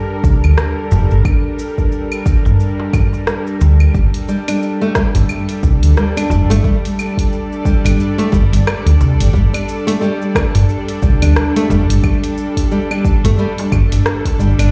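A tense, string-like drone, detuned and bright with built-in reverb and sidechain pumping, opens this hypnotic, meditative organic downtempo piece. A dark, round fretless bass sits up front with the same pumping, beside a deep overdriven kick and an overdriven kit of claves, hi-hat, rim click and shaker with a swung sixteenth-note feel, while a crisp metal-shell darbuka enters at 0.9 seconds, close and dry in the background. At 4.3 seconds a fingerpicked nylon-string guitar adds classical arpeggios with audible finger squeak and tape echo, all heard as if played on a big sound system in a bare room, in a section cut from a longer piece.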